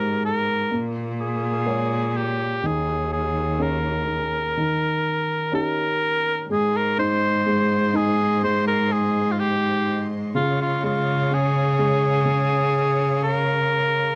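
Nostalgic yet hopeful, this short folk passage, taken from a longer piece, moves at an unhurried, straight pace in 4/4. A warm cor anglais carries the melody up front in a classical style, its smooth top shaded by light vibrato. Beneath it, a dark upright piano gives intimate, woody accompaniment; it sounds slightly detuned, and its action noise can be heard. A rich, focused cello plays the bass line with vibrato, one bowed player sitting forward in the mix. At 6.5 seconds, as the harmony settles from Abmaj7, Bbm7 and Eb7 onto Ab and then Db, a chamber string section enters in the background with pure, floating sustained chords and a soft attack. Close, detailed microphones and a dry room keep every part clear and detailed.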